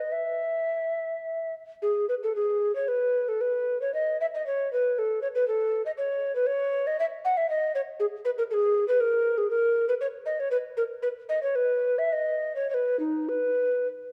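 A hollow, woody tenor recorder plays alone from the start in this radiant, serene fragment of a baroque-style classical fantasia, moving freely in a rubato 3/4 at about 101-121 BPM from E major into B major at 8.0 s, its tongued notes carrying a breathy chiff and vibrato, sitting up front with softened highs in a dark production and a moderate recital-hall reverb until it stops at 13.9 s.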